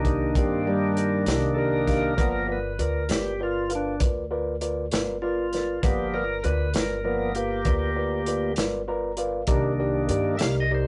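A reedy, key-clicking tonewheel organ leads this smoky, brooding slow blues in 12/8 at 66 BPM, taking the solo spot with sustained chords through a slow rotary speaker, up front alongside a dry, dark soul drum kit of hi-hat, tight kick and medium-tuned snare. Underneath, a woody, thumpy pizzicato upright bass on steel strings holds the low end, while a barky tine electric piano, clean and bright through a combo amp, adds accompaniment and steps forward with a short fill from 8.6 to 9.5 seconds. The harmony sits on Cm9, moves to G7#9 at 2.2 seconds, and returns to Cm9 at 9.5 seconds. The drums have a smooth, rolled-off top that contrasts with the organ's clean, bright tone. A moderate studio reverb colours a rough rehearsal-room sound with a dull upper end, in this brief passage cut from a longer piece.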